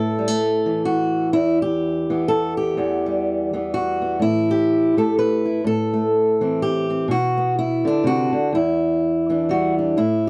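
A fingerpicked steel-string acoustic guitar plays alone through this short, dry and close-sounding folk fragment in E minor, its up-front, concert-quality tone carrying a melancholic, wistful mood at 125 BPM in a swung 3/4 as it moves from A5 through Em, Am and Bm before settling on Em7 near 8.5 seconds.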